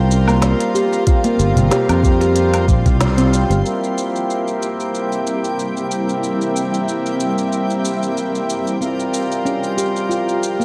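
Swung lightly at 93 BPM in 4/4, an organic electronic drum kit with woody snare and crisp hats, a soft up-front electronic kick that drops out at 3.0 seconds, and a very quiet clay-shelled darbuka anchor this hypnotic, meditative organic downtempo excerpt, where a reedy, breathing pedal harmonium and a cloudy, detuned granular pad pump under sidechain and shimmer reverb, a growly fretless electric bass and ringing nitrided-steel handpan arpeggios carry the opening until 3.6 seconds, when the bass and darbuka stop, the harmony settles on C7 and filter sweeps move across harmonium and pad, while a faint twinkling granular texture sparkles in the background and the handpan returns at 8.8 seconds, within a lush hall reverb and dark production.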